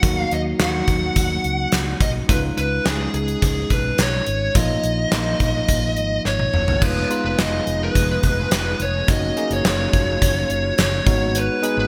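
Urgent and nostalgic, this short 1980s-style pop cut in straight 4/4 sets an up-front, distorted fuzz lead guitar melody over bell-like tine electric piano accompaniment, a round, dark fretless electric bass with subtle chorus, and a punchy gated drum kit with a fat snare and bright cymbals. A drum fill at 6.3 seconds leads into the second section, and a lush sawtooth string machine with ensemble chorus enters softly in the background at 7.2 seconds, all within a bright digital mix bathed in plate reverb.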